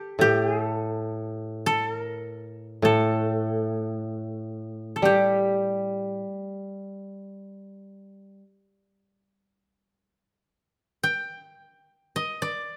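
Japanese traditional chamber music in free time, this meditative, solitary piece sits in G hirajoshi with A4 tuned to 441 Hz. One koto, played with fingerpicks and sounding warm, dry and woody up front, carries the melody from G4 to G5 across the full 12.8 seconds, while a second, mellow koto, also fingerpicked and close, supplies a low accompaniment from A2 to G3 until it stops at 8.4 seconds. Close, detailed microphones and light reverb capture this short cut from a longer piece.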